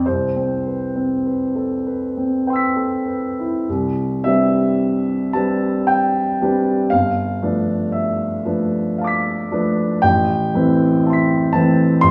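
A warm baby grand piano sits up front and plays alone for the full 12.1 seconds of this serene, hazy impressionist classical excerpt. Set in C major and 3/4 time, it moves at a slow 48-60 BPM with a rubato feel, ranging from G1 up to B6. The piano's natural tone and long sustain let each chord bloom into the recital hall's moderate reverb, while a small room ambience adds intimacy. An opening passage rests on Cmaj7 before a second section begins at 3.7 seconds, drifting through Cmaj9 and G13 to settle on Am9 at 10.0 seconds. The result is a soft-focus, dreamy fragment cut from a longer piece.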